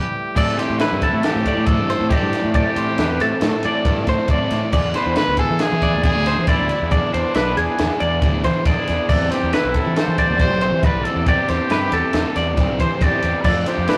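Captured as a rough rehearsal-room recording with tube saturation and a stone-room reverb, this wistful, intricate math rock and midwest emo cut in A minor moves at 138 BPM in 5/4, as a bright trumpet sings a vintage pop-style lead with light vibrato over a very quiet twangy electric guitar that stops at 2.1 s. A double-tracked overdriven semi-hollow guitar riff enters at 0.3 s, and chiming spring-reverbed twelve-string electric guitar arpeggios, a round, punchy fuzz fingered electric bass and an up-front compact cocktail drum kit with a high-tuned snare and rolled-off top join at 0.4 s over Am7, E7, Cmaj7 and Dm7.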